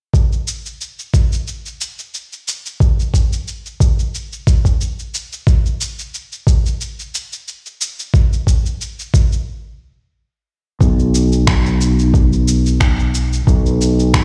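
A gritty, thumpy, overdriven electronic kick drum and compressed sampler-style shaker with finger snaps open this mystical, warm organic downtempo excerpt at 90 BPM with a light sixteenth-note swing, halting at 9.5 seconds before a growly, up-front fretless electric bass enters at 10.8 seconds, its sustained notes colored by tube saturation, lush chorus and sidechain pumping, all heard in a big, bare room with large studio reverb.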